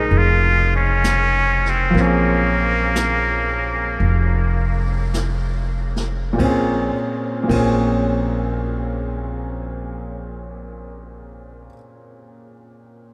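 In a slow 4/4 swing with lilting eighth notes, this jazz ballad drifts between 46 and 68 BPM, slowing over its opening 6.4 seconds. The mood is smoky and wistful, settled in Bb minor on a Bbm9 chord. A trumpet with a straight mute carries the melody up front in a nasal, brilliant jazz voice, with light vibrato, scooped notes and a tape echo, before falling silent at 5.2 seconds. A clear baby grand piano accompanies with long sustain and a subtle chorus, while a woody pizzicato upright bass holds the low end and a soft brush kit, with dark cymbals, a boomy kick and a rolled-off top, sits behind until 7.8 seconds. The bass carries on until 11.7 seconds and the piano rings on until 13.1 seconds, with the whole dreamy mix soaked in a huge ambient reverb in this fragment, cut from a longer piece.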